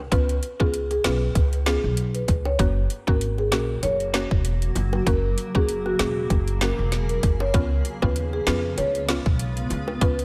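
A light small-room reverb frames this bouncy, hypnotic dancehall excerpt at 97 BPM, which features an up-front kit with a woody snare and metallic hats, a thumpy, dark pizzicato upright bass, a rosewood marimba melody with tape echo, a bright chorused synth pluck, high-tuned bongos in the background, and, from 4.0 seconds, a blurred granular cloud pad with lush chorus and sidechain pumping over C#7 and F# chords.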